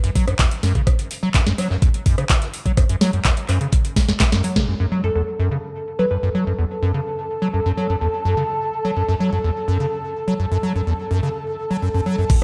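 Acid house at 126 BPM in F# minor, this trippy, raw excerpt from a longer piece opens with a squelchy, resonant square-wave acid bass riff under a filter sweep. It is colored by tube saturation, analog chorus, cassette tape and sidechain pumping, and it runs throughout. For the first 4.7 seconds a booming, overdriven analog drum machine with a crisp snare, metallic hats, handclaps, rim click and crash cymbal sits up front, joined at 0.2 seconds by a thumpy, tape-warm electronic kick. A very quiet, distant brush kit adds hi-hat and snare from a small room. A drum fill and band accent close this opening, and at 4.7 seconds the drums drop out as a lush, thick, detuned unison pad with a slow attack settles on F# minor, pumping with the sidechain as a filter sweep moves across it. A glassy, crystalline wavetable pluck with chorus and delay sounds a brief melody from 5.0 to 6.2 seconds, and the drums return for a final instant at the end, all set in a dreamy mix soaked in plate reverb.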